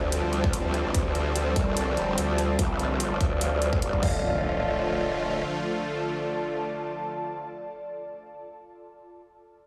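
A growling, overdriven bass wobbles beneath a lush, detuned supersaw pad and an ethereal, phased airy pad, both pumping against the sidechain, as this menacing, chaotic heavy wobble dubstep excerpt in D minor at 146 BPM with a swung half-time feel brings in a punchy electronic kick and crash-and-hi-hat kit until 4.1 seconds, after which the bass drops out at 5.4 seconds and a background impact continues to 8.9 seconds in a light small-room ambience.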